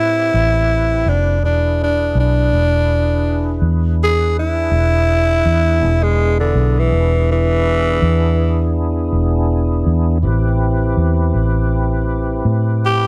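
Mournful and smoky, this slow blues in 12/8 at 54 BPM sets a growling, raspy tenor saxophone up front on a jazz-style solo, its gritty, scooped notes carrying a light vibrato over chords moving from Am9 to E7 and back to Am9 at 10.2 seconds. Beneath it, a fat tonewheel organ holds sustained chords through a slow rotary speaker with light overdrive, chorus vibrato and key click. A dark, round, foam-muted fingered electric bass sits punchy and close in a dry 1970s-style studio sound, in this brief cut from a longer piece.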